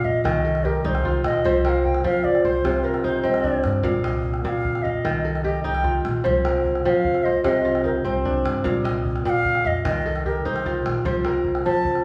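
West African traditional string and xylophone music in a straight 12/8 at 100 BPM, this hypnotic, flowing passage is cut from a longer piece. The kora sits up front with crisp, ringing fingerpicked arpeggios spanning Bb2 to F5. Above it, a bamboo bansuri carries the melody with a pure, reedy, tongued straight tone between Bb4 and A5. An upright bass plays woody, thumpy pizzicato lines in the low register, and a deep calabash enters at 0.3 seconds, sounding distant as if in a large room. The harmony circles over a C pedal through Eb/C, F5/C, Cm and Bb/C, all set in the wet reverb of a recital hall.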